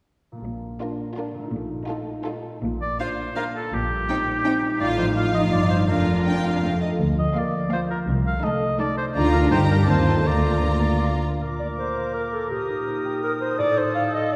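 Cinematic, playful and whimsical film cue in Bb major at 165 BPM in 3/4, mischievous and magical in mood, where a ringing, thumb-plucked concert harp runs arpeggios from 0.3 s over bowed cello and double bass sections providing the bass, a smooth violin section carrying the melody with a focused second violin line and a background viola section in accompaniment, joined by a clear solo oboe at 2.8 s, then an airy flute section and an up-front, mellow clarinet adding second lines near the end as the strings stop at 11.2 s, all heard from further back in a reverberant concert hall in this cut from a longer piece.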